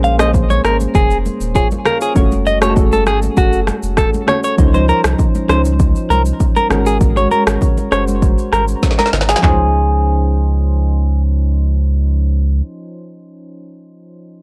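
A joyful, breezy afrobeats groove opens with a clean, picked electric guitar riff through tape echo over soft, chorused synth keys with tremolo, a round sine sub bass, an up-front afro-pop kit of deep kick, woody snare, rim click, shaker, handclaps and toms, and very quiet ringing congas in a dry, gritty sound, as a filter sweep colours the keys from 4.6 seconds, a drum fill arrives at 8.8 seconds, and the mellow keys linger to 14.4 seconds after the other parts drop out.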